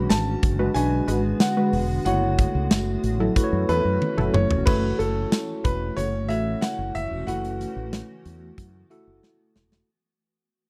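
1980s-style pop in F# minor at 92 BPM, urgent and nostalgic, cut from a longer piece, where a clear grand piano melody with slapback echo rides over a bell-like tine electric piano with phaser, a cloudy granular pad, a round, dark fretless bass, funky sawtooth polysynth stabs with chorus entering at 0.6 seconds, and a big-room rock drum kit with a punchy kick, bright cymbals and tambourine, moving from G#m7b5 to F#m7 with drum fills before a fade-out that begins at 4.7 seconds in a dry, close 1970s-style studio sound.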